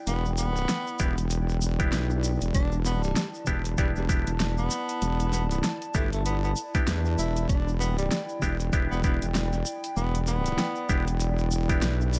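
A swung 4/4 groove of overdriven pop drum kit hats and a fat snare, with a grainy, close tube shaker, drives this swaggering, gritty glitch hop excerpt over a single Em7 chord, joined at 1.0 s by a knocking, overdriven electronic kick and nasal, stringy clav stabs that pump and trail dub echo. Up front, a heavy, saturated wobble bass with chorus sits beneath a dark, warbling tape-like pad that carries lo-fi 12-bit grit, reverb and sidechain pumping. A breathy tenor saxophone plays a jazz-style solo melody with vibrato and scooped notes, drifting through dub echo in a digital ambience.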